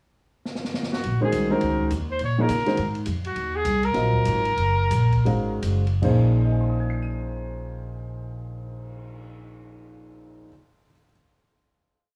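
Set in a moderate club reverb, this short modal jazz piece in Bb minor carries an intense, spiritual mood at a swung 144-207 BPM, easing into a slowdown before settling on a held final chord at 6.0 seconds. A drum fill on the open kit enters within the pickup bar at 0.5 seconds, with dark cymbals, a boomy kick and a stick ride pattern. A distant, roomy trumpet states a motif-based solo melody with light vibrato, while a woody, growly upright bass walks beneath and an intimate, natural concert grand with deep bass and audible action noise comps in syncopated quartal voicings over Bbm11 and Ebm11, ringing on alone until 11.1 seconds.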